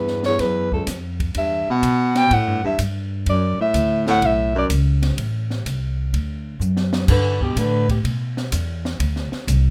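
Swinging and warm, this brief cut from a small-group swing and bop jazz piece in D major at 126 BPM sets a mellow soprano saxophone melody with light vibrato and scooped notes above a baritone saxophone second line, both up front until 8.0 s, while a woody pizzicato upright bass carries on to 9.7 s and an open drum kit with dark cymbals, a high-tuned snare and a boomy kick adds a fill at 6.6 s, in a moderate club reverb, as the chords move from C#7#9 through Dmaj9 to G6 and Csus2.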